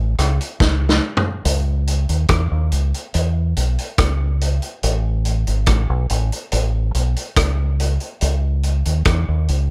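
A dry, up-front sound frames this serious, meditative roots reggae excerpt in straight 4/4: a dark, round, punchy fingered electric bass opens alone, and a gritty, saturated vintage acoustic drum kit with a rolled-off top enters at 0.2 seconds, bringing a tight kick, medium-tuned snare, rim click, hi-hat and toms, with a drum fill from 0.6 to 1.4 seconds.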